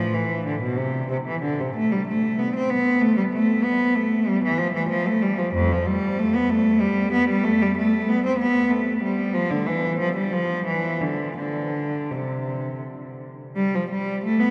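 Bathed in a long, dark cathedral reverb, a single clear, focused cello plays up front with vibrato, bowing a flowing, dance-like baroque-style suite movement in a supple, rubato triple metre, cut from a longer piece and lasting about 14.5 seconds.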